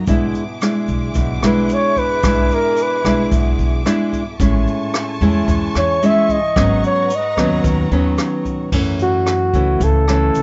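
Bossa nova at 111 BPM in G# minor, melancholic and intimate: an up-front fingerpicked nylon-string guitar and a woody pizzicato upright bass play alongside a brushed jazz drum kit with dark cymbals, a boomy kick and a rolled-off top, while a grainy tube shaker sits in the background, a lush bowed violin section holds sustained chords until 8.7 seconds, and a breathy, close-miked flugelhorn enters at 1.5 seconds to take the solo with scooped notes, all within light reverb.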